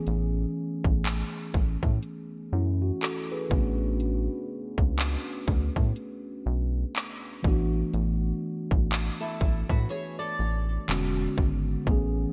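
Tender and dreamy, this short contemporary R&B excerpt moves at a slow 61 BPM in 4/4 with a swung sixteenth-note feel. A mellow tine electric piano, clean and up front with a subtle chorus, carries the accompaniment through a progression that moves from F#m11/A to Bm9/A and E7sus4/A before settling on E13 at 10.9 seconds. Beneath it, a rubbery square bass sits forward in the mix, hollow and bouncy with a nasal, resonant filter pluck. A trap drum kit of handclaps, metallic hi-hats and a hard-clipped kick sits up front, its gated reverb giving the hits a produced, electronic edge. Briefly, from 9.2 seconds, a bright fingerpicked flamenco guitar adds quiet arpeggios, complete with finger squeaks and a touch of chorus. Light reverb and a bright 1980s-style digital sheen frame the whole, with a faint mains hum in the background.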